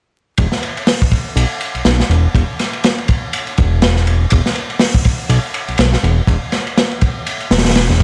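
Dry and dusted with vinyl crackle, this short, funky, gritty breakbeat clip opens at 0.4 seconds with a crunchy, saturated acoustic drum kit (dark cymbals, a medium-tuned snare, a tight kick and a rolled-off top) up front alongside a fat, detuned sawtooth-and-square analog bass with a filter pluck and sustained low notes, all over a swung sixteenth-note feel.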